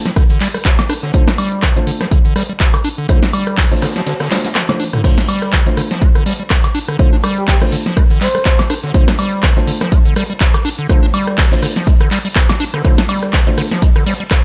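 A squelchy, resonant square-wave acid bass riff opens this raw, driving acid house excerpt at 123 BPM in D minor, riding a swung groove from a punchy analog drum machine, an up-front electronic kick and a quiet background street-band kit with a high-tuned snare, while a dark, boxy baby grand piano with audible action noise adds tape-echoed stabs, a break arrives at 4.1 seconds with a drum fill at 4.6 seconds, and a breathy, flute-like synth lead with vibrato drifts in behind the mix at 7.4 seconds.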